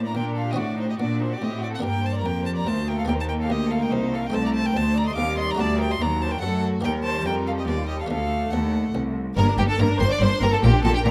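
A stormy, dramatic baroque-style concerto movement in G minor at 143 BPM in 3/4, this excerpt sets a solo violin, its tone soft-edged and expressive with sliding portamento, above a very quiet violin section melody, a focused second violin line, a lush viola section and an up-front symphonic cello section on the bass. A muted, lute-like buff-stop harpsichord sits dry in the background, while a bowed double bass section joins the bass at 9.4 s as the harmony returns to G minor. The sound is close and detailed in a moderate recital hall reverb.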